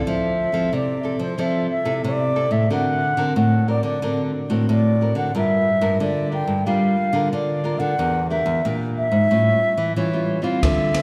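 A wooden baroque flute sings the melody from the opening moment, its pure tone, vibrato and soft attack sitting up front, while a fingerpicked nylon-string guitar accompanies it with audible finger squeaks. A second classical nylon-string guitar, also fingerpicked, takes the bass line from 0.1 seconds. This cut from a longer samba and choro piece moves at 91 BPM in a straight 4/4 in F major, and its mood is yearning yet lively. The harmony moves from Fmaj7 through D7b13, Gm7 and Em7b5 to A7b13. At 10.6 seconds an open jazz drum kit appears with kick drum, ride cymbal and rim clicks, its sound dark and smooth with a punchy kick, a rolled-off top and a small-room character. The recording sits in a church or concert hall, bathed in a long, wet church reverb.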